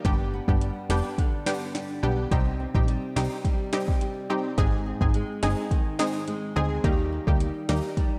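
Sultry and bouncy, this short dancehall excerpt in straight 4/4 moves through G, Cm, Ab and Eb over a dreamy, reverb-soaked hall ambience. An up-front afro-pop kit with a deep kick, sharp snare, metallic hats and rim clicks carries vintage 12-bit sampler grit, while a punchy, funky analog bass plucks low beneath it. A bright, detuned analog pluck with chorus and sidechain pumping plays the accompaniment, and a dark, fingerpicked flamenco guitar adds arpeggios bathed in lush chorus.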